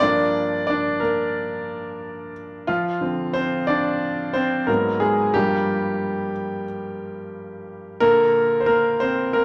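Soul with a cinematic, smooth mood, this short passage cut from a longer piece sets a grand piano alone for its full 9.4 seconds. The piano sounds clear and intimate, placed up front with a natural tone and audible action noise that brings the listener close to the instrument. Its playing spans from G2 up to D5, moving through minor seventh and lush extended chords, including a brief Abm9 at 4.7 seconds before settling back and closing on Bbmaj9 at 8.0 seconds. A gentle swing on the sixteenths gives the rhythm a relaxed lilt. The performance was captured live in a stone room whose moderate reverb adds a sense of space around the piano.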